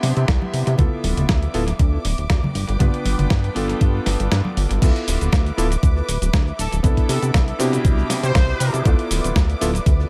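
Dry and echo-heavy, this groovy, sleek nu-disco excerpt is cut from a longer piece and rides a lightly swung 16th-note feel in 4/4. An up-front, knocking electronic kick sits on top of a gritty, compressed sampler-style kit of snare, hi-hat, shaker and crash, with analog delay trailing the kit. A glossy, chorused synth bass with a plucky, retro pulse-and-sawtooth tone drives the low end, while a clangy vintage electric grand piano comps through Cmaj9, Dm69 and G7 with its own analog delay. Dark, bowed sul tasto strings pump under sidechain, and ringing congas with delay sit far back until about 4.5 seconds. The kick drops out just before the drop at 4.8 seconds, and a clear, distant trumpet section with delay states a short melody from 6.6 to 8.9 seconds.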